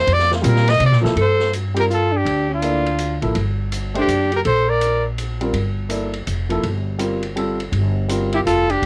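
Modal jazz in a swinging 3/4, intense and spiritual in mood, heard as a short cut from a longer performance with the close, boxy feel of a home cassette recording in a small booth. A clear, forceful trumpet opens with a solo over the bass, with drums and then piano entering within the first half second, its scooped notes and light vibrato sitting up front, and it carries the melody until about 5.1 seconds before returning briefly near the end. Pizzicato upright bass with a woody tone anchors the low end throughout, while a vintage drum kit with dark cymbals and a rolled-off top keeps hi-hat, ride and snare well in the background with the same tape coloring as the trumpet. A concert grand piano with deep bass and audible action noise fills in the harmony, moving from a suspended chord to a rich minor sound as the second section begins at 1.2 seconds. That is where a bright, punchy alto saxophone joins with its own vibrato-laden second line beside the trumpet, and the two horns reappear together in the closing moments.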